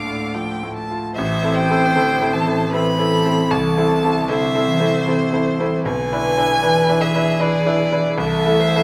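Heard in a moderate recital hall reverb, this solemn, elegiac slow movement for piano quartet, cut from a longer piece, moves in a rubato triple metre with uneven beats. A bright, brilliant concert grand with deep bass and a worn edge sits up front as accompaniment, while a focused, rich solo violin with vibrato carries the melody and a second violin adds a smooth, even line from a distance. A close, intimate cello with light vibrato, soft attack and airy bow shares that second line, as the harmony passes from Dm through Am and E7/B before settling on Am/C at 8.2 seconds.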